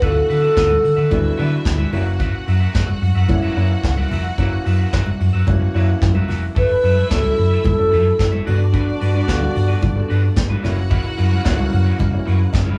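Danceable and sultry, this disco excerpt at 110 BPM puts an airy alto flute melody up front, returning at 6.6 seconds over a dark, round fingered hollow-body bass, a brushed drum kit, a clear grand piano, a twangy, slightly broken-up electric guitar, lush distant strings and soft-handed congas, with a fat tonewheel organ on slow rotary speaker and a saturated cowbell joining in the background at 10.9 seconds, all captured as a band playing live in a small room.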